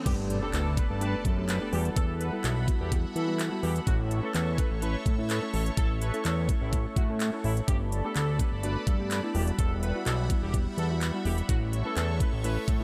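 A light reverb gives this energetic, confident dance-pop excerpt a polished sheen, and it lands straight on the drop at 0.1 seconds, with a background riser and impact playing out through the first 2.0 seconds. A layered electronic pop kit drives it in a straight 4/4, with a knocking kick, crisp hi-hats, handclaps and crash cymbal, while a fat, saturated analog bass built from detuned sawtooth and square waves sits thick and nasal beside it. Above them, a sweeping, resonant pad with an airy noise layer and a bright chorus sheen holds sustained chords from the very start, pumping under the sidechain alongside the bass. A soft, round pluck with a dark, decaying ring-modulated edge tucks in behind as accompaniment. Carrying the melody is a clear, tight vintage-style horn section with light vibrato, its lines trailing off into delay as the harmony moves through Gadd9, Emadd9 and A.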